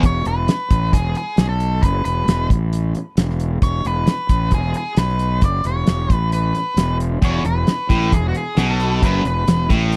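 A sunny, swaggering classic rock passage in E major at 133 BPM opens on a brief E5 hit from two bright, overdriven, picked electric guitars that return with their low riff at 7.2 seconds, while a punchy, up-front fuzz bass and a damped 70s drum kit with a fat snare and tight kick play throughout, and a dark octave-fuzz lead guitar with tape echo carries the melody from 0.1 seconds, in a close, dry 1970s-style studio recording.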